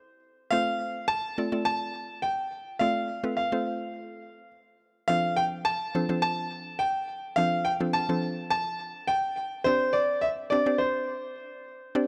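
Bittersweet yet energetic, this short pop excerpt at 105 BPM in straight 4/4, tuned to A4 = 435 Hz, sets a smooth, vintage-toned grand piano melody with digital delay up front over a woody, round FM synth pluck with chorus carrying the accompaniment, both entering at 0.5 seconds as the chords move from F through Dm7/F to Gsus4 in light reverb and studio ambience.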